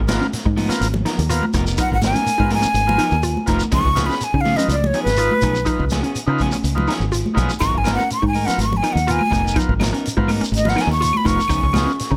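A straight afrobeat groove in 4/4 rides on a punchy, foam-muted fingered bass up front and a vintage acoustic kit with a punchy kick and rolled-off top, backed by high-tuned congas, a grainy shekere and, from 7.6 s, woody claves in the background. A buzzy overdriven combo organ and a slightly broken-up electric guitar stabbing through spring and plate reverb fill out the harmony, while a hollow, detuned square-wave pluck bounces through chorused arpeggios behind them. Entering at 1.8 s, a breathy metal jazz flute with a soft attack, vibrato and an unsteady tone leads a defiant, funky solo over the alternating G#m69 and C#7 chords in this short cut from a longer piece.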